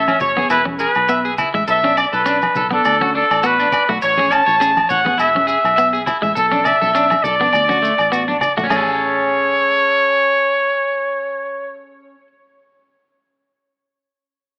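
With an AM-radio tone and a moderate plate reverb, this sunny, danceable highlife excerpt puts a clear, vintage jazz-style trumpet with vibrato up front alongside a twangy, slightly broken-up electric guitar playing arpeggios through slapback echo, while a bright, compressed clean electric guitar adds accompaniment, a round, foam-muted fingered bass carries the swung groove, and ringing agogo bells, soft-handed congas and grainy maracas sit in the background until a drum fill at 8.3 seconds leads into a new section at 8.7 seconds.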